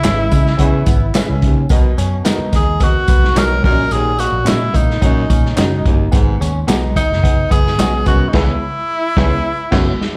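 A clear tenor saxophone carries the melody of this uplifting, joyful 1960s-style soul cut at 108 BPM, opening together with a muffled, lo-fi drum kit, a round, foam-muted fingered electric bass, a woody, slightly detuned upright piano, mellow electric guitar stabs and background handclaps and tambourine. A twangy, direct-recorded clean electric guitar riff joins at 0.3 seconds and a smooth baritone saxophone riff at 0.6 seconds, with slapback echo on the horns, piano and both guitars, and the band sits in small-room club reverb as if heard through a live venue's PA. The band hits an accent from 8.3 seconds over C#m7 and F#7sus4, closing on a drum fill.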